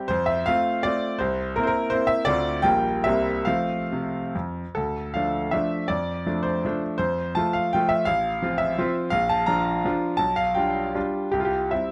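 Dotted rhythms in 3/4 give this romantic classical dance a lilting, graceful step, taken with free rubato at a tempo that drifts between 131 and 180 BPM. A solo grand piano carries the whole fragment from 0.0 to 11.9 seconds, spanning A1 to Bb5, with a brilliant, intimate tone, long sustain and audible action noise that keeps it present and up front. The opening phrase sits in F major, moving through C7, Dm7 and Gm7/Bb before settling back on F. At 4.7 seconds the music turns to D minor, then passes through F, Bb and G7/B to close on a C chord, lending the dance a rustic charm. A light reverb surrounds the instrument, and the overall production leans dark and warm, a mellow frame for the piano's gleaming attack.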